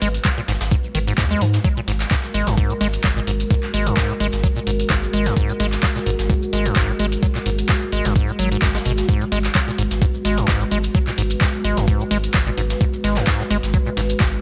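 A thumpy, overdriven electronic kick sits up front in this raw, playful acid house excerpt at 129 BPM with a light swing, joined by a squelchy, resonant square-wave acid bass riff with filter sweep and tape echo, a thick saturated sine sub bass, a moody detuned sawtooth pad sustaining an Abm7 chord with chorus and sidechain pumping, overdriven analog drum-machine handclaps and hi-hat, a very quiet gritty breakbeat kit with a high-tuned snare, and grainy, close maracas, all within a dry, gritty hardware sound.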